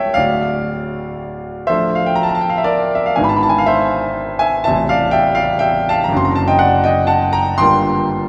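Wistful and yearning, this brief romantic nocturne for solo piano unfolds slowly at 40 beats per minute in 6/8, counted in dotted quarters, with a freely breathing rubato. A clear concert grand carries everything alone, sitting up front with a smooth, vintage character and a deep bass that reaches down to A0 while the upper register extends to C6. The harmony drifts from D minor at 0.2 seconds through E7 over G-sharp and A minor, then D7 over F-sharp, before arriving at G minor seventh at 7.6 seconds. A wet church reverb with a long decay of 3.5 seconds surrounds the piano, and a faint mains hum sits beneath it. Tuned slightly high at A4 = 441 Hz, this short fragment is cut from a longer piece.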